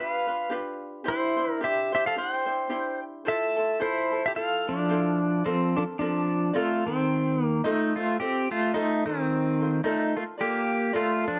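Swinging lightly at 109 BPM in 4/4, this dreamy, sunny Hawaiian excerpt sets a bright, twangy electric pedal steel guitar up front, sliding and swelling through the melody with fingerpicks over a warm, light, fingerpicked acoustic ukulele, both bathed in plate reverb as the harmony drifts from F major into Bb major at 5.5 seconds, moving through chords like Fmaj7 and Bbmaj9.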